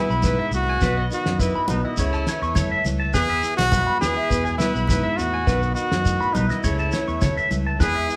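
Sunny and carefree, this short highlife guitar band excerpt at 103 BPM in E major puts a clear, close-miked trumpet up front with light vibrato and scooped notes, over twangy, slightly broken-up guitar arpeggios through a phaser, a clean fingered guitar and reedy, sweet accordion chords in the background, a growly foam-muted fingered bass, a dry, thuddy cloth-damped drum kit with a fat snare, grainy shekere and bright, thin-skinned congas, all played live in one room with moderate large studio reverb.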